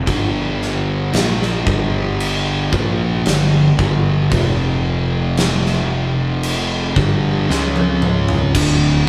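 Heavy and ominous, this short stretch of stoner and doom metal crawls at 57 BPM in 4/4, with two thick fuzz guitars sitting in the background, one warm and one dark, grinding through a riff that moves from G5 to F5 and back before a C#5 turn lands on D5. Beneath them an overdriven, punchy fuzz bass plays from the first instant, while a big acoustic rock kit of kick, snare, toms and crash cymbal sits up front with a tight kick, a medium-tuned snare and a rolled-off top, playing a fill from 7.5 to 8.5 seconds. The band sounds like it is playing live in one room, touched by light reverb.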